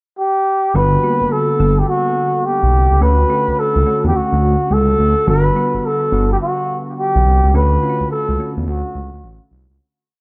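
A bucket-muted trumpet carries a veiled, breathy, jazz-style hook melody with vibrato and scooped notes, over round electric-piano-like synth keys with chorus and phaser pushing drop-2 chords and a smooth gliding synth bass playing a bouncy, swung synth-funk line with ghost notes and chromatic approaches, in an upbeat new jack swing R&B piece at 106 BPM in D major that moves between Gmaj7 and Dmaj7 in a dark, lightly reverberant mix before fading out from 7.5 seconds.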